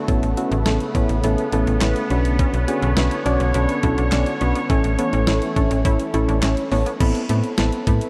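A sweeping, resonant pad of detuned sawtooth chords opens this nostalgic, bright synth-pop passage, cut from a longer piece, its slow attack and long release bathed in lush chorus. Almost at once, soft, round electric-piano-like synth keys with a gentle, vintage warble sit up front beside a snappy, slap-like FM bass with a metallic attack, all moving at 104 BPM in a straight 4/4. A clean 12-bit drum machine with a sampler-style feel supplies a thumpy kick, a medium-tuned snare, hi-hat, handclaps and crash cymbal. At 2.4 seconds an analog pluck joins in the background, playing sawtooth-and-square arpeggios with a noise layer and filter sweep, coloured by chorus and tape echo until 7.0 seconds. The harmony moves from Aadd9 through Bmadd9 to A, then shifts to Amadd9 at 7.0 seconds, and the whole dreamy mix is soaked in a huge ambient reverb with a long tail.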